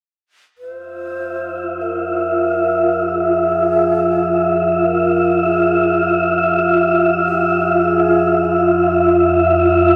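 Drenched in a vast, cathedral-like reverb, this fragment of a dark ambient drone piece feels desolate and ominous. A breathy, wind-like tuned noise texture sits up front from 1.1 seconds, glazed with shimmer reverb, while a deep, wave-folded synth drone rumbles beneath from 1.5 seconds through lush chorus and a filter sweep. Far off, a hollow bamboo shakuhachi fades in from 0.6 seconds with vibrato and chiff, its mellow melody trailing through tape echo and shimmer.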